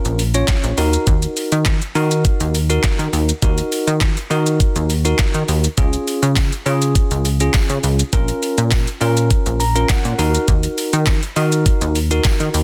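Dance-pop with an upbeat, carefree mood, built on a smooth, electronic R&B drum kit whose knocking kick, deep snare, metallic hats, handclaps and shaker sit up front beside a punchy, funky analog bass with a sawtooth filter pluck, sidechain pumping and ring modulation. A bright, bell-like tine electric piano, also pumping, carries the accompaniment over chords moving from Bbm to Ebm and Db, with a short fill at 9.3 seconds, while a barely audible electronic downlifter opens the passage and a very quiet, jingly acoustic tambourine joins at 6.4 seconds. The sound is dry and close, finished with a dense, heavily limited modern master.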